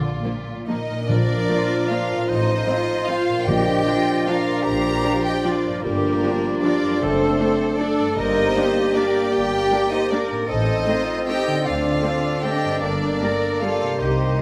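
A 3/4 waltz pulse at 153 BPM drives this orchestral ballroom passage in Bb major, with uneven beats stretched by rubato that give it an elegant, sweeping feel. An intimate violin section carries the melody with light vibrato and a soft sul tasto attack. Behind it, a richer violin section, a clear oboe, a pure, hollow flute section and a very quiet clarinet weave supporting lines. Ringing concert harp arpeggios sit beneath them, and the viola section and a mellow bassoon fill out a lush accompaniment while a horn section holds sustained chords. Cellos and an expressive bowed double bass section anchor the bass, and timpani struck with medium mallets add a dry accent from 1.1 to 4.0 seconds. The harmony moves from Bb through Gm7, D7/F# and Adim before settling on Gm, all heard in a moderate concert hall reverb.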